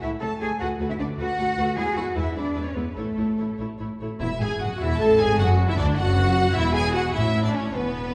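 Graceful and spirited, this short passage from a quick classical-period movement for string orchestra moves in a lilting 6/8 at about 96-105 BPM in dotted quarters, in A major, with a rubato feel that lets the pulse breathe. The first violins carry the melody in a focused, lush voice with vibrato, while the second violins add a soft-attacked, expressive second line. Violas fill in the accompaniment with an even, slightly distant tone, and the cellos and double basses anchor the bass, the cellos rich and smooth, the basses more focused and reaching down to a deep E1. All five sections play throughout, the harmony turning from A/C# through Bm7/D and E7 back to A before the second section at 4.2 s leans on Eadd9 and D/F# and settles on an open A5. The strings sound as if heard from further back in a recital hall, wrapped in a generous, wet reverb of about 1.5 seconds that adds a gentle glow to the bowed ensemble.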